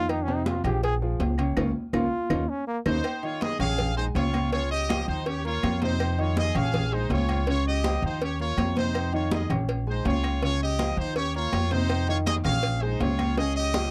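A dry, close studio sound in a 1970s style gives this fiery, danceable salsa fragment, cut from a longer piece, an immediate punch. It opens with a bright trombone solo up front, sung with light vibrato in a pop style, while the band hits an accent and a drum fill leads into the next section. At 2.9 s a brilliant, tight trumpet section takes over the melody, sitting present and forward in the mix. Underneath, a warm concert grand piano with deep bass and short sustain comps on minor-seventh, add9 and dominant chords, and a dark pizzicato upright bass with steel strings sits prominently. In the percussion, high-tuned congas ring with hard hands in a live room, while tight bongos and cowbell, metal-shelled timbales with agogo bells, and woody claves stay in the background. A final drum fill closes the passage at 13.4 s.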